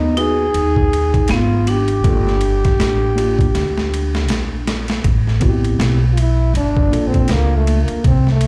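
A punchy, close-miked trombone with scooped notes and slapback echo leads this mellow, cool jazz-hop excerpt at 80 BPM with a swung 16th feel, over a woody pizzicato upright bass, a clean tine electric piano and a ringing, hard-mallet vibraphone that plays a second line until 4.7 seconds, while a gritty, overdriven boom bap kit with a thumpy kick and high-tuned snare plays a fill from 3.5 seconds before the trombone takes a forceful solo at 5.0 seconds, all heard like a live club gig through the venue's PA.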